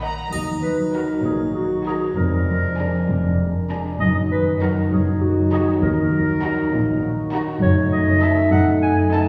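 In a straight 6/8 at 66 BPM, this whimsical, mischievous film cue in Eb minor opens with a ringing, thumb-plucked concert harp playing arpeggios over a dark cello section and a warm double bass section, while distant, lush violin sections sit in the background, one carrying the melody and the other a second line with portamento. At 0.3 s a mellow, roomy clarinet adds another line, a clear, punchy French horn section holds sustained chords, and a close, dry triangle sounds until 1.5 s; a very quiet viola section joins the accompaniment at 0.9 s. The ensemble is heard from further back in the room through a wet scoring stage reverb, giving this short excerpt a quirky, storybook air.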